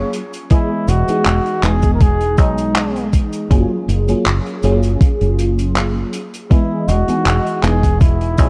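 A lightly swung 4/4 groove is set by a thumpy, sampler-style electronic kick that sits up front from 0.5 seconds, with a polished, airy studio kit adding cabasa, handclaps and hi-hat while a foam-muted fingered electric bass holds the low end. In this faded, dreamy vaporwave excerpt, a lush FM electric piano layered with a soft pad, treated with phaser, ensemble chorus and analog delay, drifts between Emaj7 and F#maj9. Above it a breathy, whispered flugelhorn carries the melody with vibrato and tape echo, all wrapped in a dark, cassette-tinged production with light reverb.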